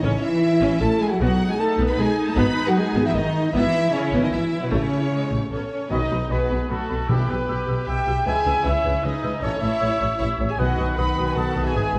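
Adventurous and triumphant, this cinematic excerpt in 3/4 opens with a lush bowed string body: warm violins carry the melody over a rich, distant second violin line, smooth violas, woody dark cellos and an up-front, focused double bass, while mellow, roomy French horns hold sustained chords. Shadowy, tight trumpet stabs arrive at 5.5 seconds. At 5.9 seconds an airy background flute and a soft-toned clarinet add second lines, clear trombones join the sustained chords, and calf-headed timpani strike briefly, followed at 6.3 seconds by a distant oboe line, all set in a moderate scoring-stage reverb with a dark production.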